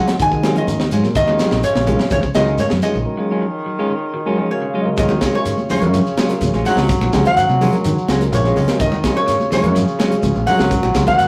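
This cut from a longer afrobeat piece has the rough, saturated sound of a rehearsal room, set in a short, wet studio reverb. The mood is funky and driving, with a straight feel in four. A bright, nasal metal-body resonator slide guitar, played with fingerpicks and given a slapback echo, carries the melody, while a brilliant, punchy trombone with light vibrato plays a forceful second line from a roomy distance. A hollow-bodied semi-hollow electric guitar adds clean stabs through spring reverb, and a very quiet clean electric guitar picks arpeggios underneath. A round, dark fingered electric bass and a tight funk drum kit with a high-tuned snare drive the groove, with grainy shekere and very quiet, hard-handed congas in the percussion. A reedy, lightly overdriven electric piano sits in the background, and during a break from 3.1 to 5.0 seconds it plays a fill starting at 4.3 seconds.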